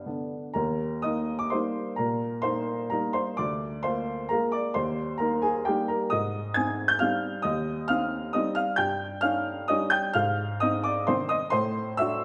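Graceful and sparkling, this short classical piano waltz in Eb major moves in a flexible, rubato 3/4 that drifts between 116 and 141 BPM. A clear upright piano plays solo throughout, its woody, open tone sitting up front across a range from D2 to Ab6, while a recital hall reverb lends a lingering 1.7-second tail. The harmony passes through Eb, Abmaj7 and Eb7/G before arriving at D7/A as the cut from the longer piece ends at 12.2 seconds.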